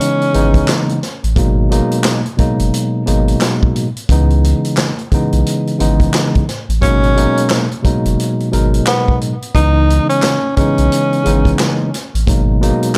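A breathy tenor saxophone carries the melody with a mellow, jazz-style subtone, vibrato and scooped notes, its smooth top touched by analog delay; it sounds a brief phrase at the very start, then returns for a solo over the band from 6.8 to 11.8 seconds. This is a reflective, gritty boom-bap hip-hop cut with a swung sixteenth-note feel, taken from a longer piece. A clean tine electric piano plays the accompaniment throughout, heard through its built-in speakers and colored by cassette tape, moving between C#m9 and G#m9 chords. Underneath, a deep, round sub bass with a sine-like, sustained tone and fast attack gets extra body from tube saturation. The vintage drum kit sits up front with a punchy kick, medium-tuned snare, hi-hat and handclaps, recorded naturally in a studio room with a rolled-off top. The whole recording is dry and gritty, with little reverb and a hardware character.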